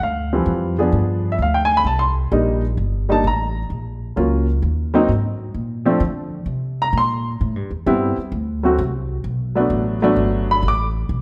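A baby grand piano and a pizzicato upright bass begin together, setting up a sophisticated, playful small-group jazz feel in swing and bop style at 130 BPM in 4/4 with a 68% swing on the eighth notes. The piano comps in an accompanying role, its tone worn and intimate with a short sustain and audible action noise that keeps it close and natural. Underneath, the steel-strung bass sits up front with a woody, dark, thumpy sound, anchoring the low end. The harmony moves briskly through rich jazz colours, from Dm11 and G7b9 through Bbm, Ab9 and Am9 before settling on Gmaj7. A moderate recital-hall reverb gives the pair the natural ambience of a church or concert hall. Cut from a longer piece, the passage runs about eleven seconds, with the piano dropping out at 10.9 seconds and the bass continuing to 11.2 seconds.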